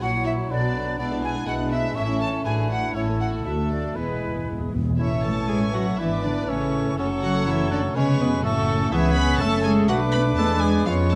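A cheerful, spirited classical-period orchestral passage opens with an intimate, sul tasto violin section carrying the melody, woven with a background second violin line, an airy silver flute, a clear clarinet, a mellow cor anglais, a present bassoon and very quiet violas, over sustained background French horn chords and a bass of dark double basses and warm cellos, with a timpani fill from 4.0 to 5.0 s and a trumpet adding stabs from 5.0 s, all set in a moderate stage reverb.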